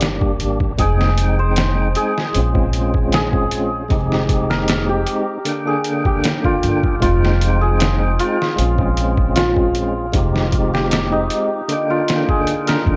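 Dark and melancholic, this trip hop excerpt moves at 77 BPM in F minor, built on muffled, pitched-down sampler-style drums with a thumpy kick and an overdriven edge, a woody pizzicato upright bass on gut strings, and a fat tonewheel organ with key click, overdrive, tremolo and a fast rotary speaker, all running from the start. At 0.8 seconds a shimmering, ringing santur takes the melody, its hammered tone roughened by 12-bit sampler grit and trailed by tape echo. Chords cycle through Gm, Fm7 and Bbm7 in a small, lightly reverberant room, and the whole recording wears the warbling pitch drift of old cassette tape.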